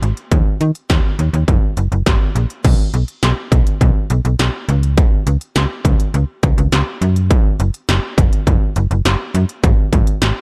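Synth-pop at 103 BPM in a straight 4/4, driving yet melancholic, cut from a longer piece with a new section arriving at 2.6 seconds. An up-front, slap-like FM bass with a snappy, metallic attack and decaying notes spans F#1 to D#3 alongside an industrial electronic drum kit whose overdriven, distorted kick, clanging snare, crisp hi-hats and crash cymbal sound re-recorded in a small room. The production is dark and dry, with little reverb.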